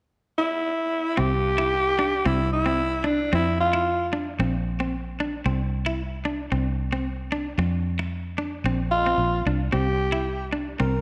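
A straight 4/4 pulse at 112 BPM drives this joyful highlife guitar band passage in C mixolydian, where a raspy, growling alto saxophone with vibrato and scooped notes leads from 0.4 s, a round, foam-muted fingered electric bass and a twangy, clean, picked electric guitar touched with spring reverb join at 1.2 s over chords moving through C, F5 and Bb, and the jazz-style saxophone returns at 8.9 s, all set in a studio with moderate echo chamber reverb.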